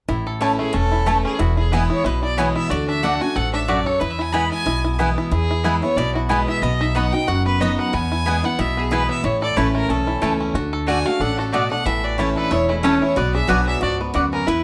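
Bluegrass in A major at 184 BPM with a swung, driving and virtuosic feel, cut from a longer piece, where a bright dreadnought guitar, twangy banjo arpeggios and a woody pizzicato upright bass carry the accompaniment from the start while a picked mandolin adds stabs. A clear, biting fiddle with light vibrato takes the melody from 0.6 seconds, bowed by one player and set up front with plate reverb. At 9.9 seconds a mellow, nasal lap resonator guitar played with slide joins on a second line, all within a moderate studio room.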